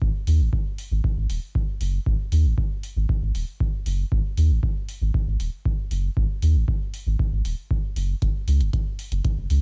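A home cassette recording with little room reverb gives this brief cut from a longer dub techno piece a deep, hypnotic cast in a straight 4/4. A clean, smooth sine sub bass sits up front, dark and sustained with a fast attack and sidechain pumping, while a deep analog kick, re-recorded in a large room and treated with studio reverb and tape, drives up front alongside it until 9.3 seconds. A layered electronic hi-hat, carrying the same reverb and tape colour, enters at 0.3 seconds and stays far back in the mix.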